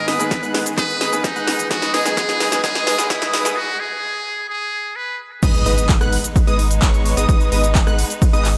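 Bathed in a lush hall reverb, this euphoric, anthemic festival progressive house excerpt at 129 BPM in G# minor moves from G#m to E before the drop at 5.4 seconds, where a deep, saturated sub bass arrives beneath the punchy, up-front electronic kick. Through the build, a buzzy, breathy trumpet with metal mute carries the melody with dub echo, and a bright baby grand piano with audible action noise accompanies until 3.6 seconds. Distant bowed strings hold sustained chords, a catchy detuned plucky lead plays high arpeggios and a sawtooth supersaw stab plays a riff, all three pumping with the sidechain, while a big-room dance kit with crisp hats, handclaps and ride plays a drum fill into a short break and a very quiet riser and impact sit underneath.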